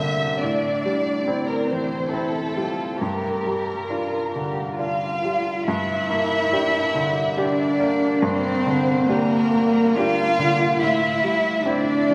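This fragment of a neoclassical piece for piano and strings begins with all three parts sounding together: a violin section carries the melody, a solo cello plays a second line, and a felt-muted upright piano provides the accompaniment. The mood is reflective and melancholic, moving at 70 BPM in 3/4 with a rubato feel, in G dorian and tuned to A4 = 435 Hz. The violins are dark and woody, bowed sul tasto with vibrato into a lush ensemble tone that feels distant even while sitting up front. The cello, a single intimate player heard close, also bows sul tasto with vibrato, with a soft attack, an airy bow and a smooth top. The piano is soft, mellow and warm, muted by thin felt and sitting intimately up front. The harmony moves from Am7 to Gm7, settles on Gm at 5.7 s for a second passage, and returns to Am7 at 10.8 s, all within a wet church reverb that places the ensemble in a church or concert hall.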